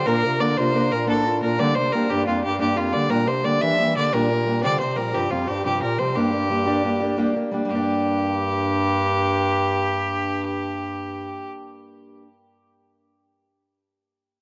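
In a 9/8 slip-jig pulse at 118 BPM in dotted quarters, with a straight feel, this short Celtic folk excerpt in G minor cut from a longer piece sounds wild and driving. A clear, intense fiddle carries the melody up front between F4 and E5, one bowed player with light vibrato and a smooth top. Beneath it, a close-miked bass clarinet in a classical style supplies a second line from F2 to F3, sitting lower in the balance than the fiddle. A fingerpicked acoustic archtop guitar, boxy with fresh strings and audible finger squeak, accompanies up front and rings on to 12.3 seconds after the fiddle and bass clarinet stop at 11.5 seconds. The harmony moves from Bb to Gm, through Csus4 and back to Gm, and a moderate plate reverb with a long tail gives the ensemble a spacious sheen.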